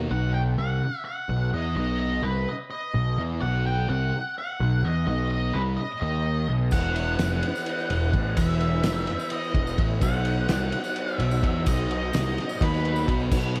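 A thick, double-tracked fuzz guitar riff and a round, punchy fuzz bass open this hypnotic psychedelic rock excerpt in 7/8 at 255 BPM (eighths), with a dark, octave-fuzz lead guitar carrying the melody through tape echo from 0.1 seconds. At 6.7 seconds a muffled, cloth-damped drum kit with a fat snare and tight kick arrives up front, joined by a jingly tambourine and the clean tonewheel organ, which returns after a brief touch at the very start, its key click and fast rotary speaker shimmering in the background. The trippy groove moves from B to E5 and back to B, all set in light reverb with a studio ambience.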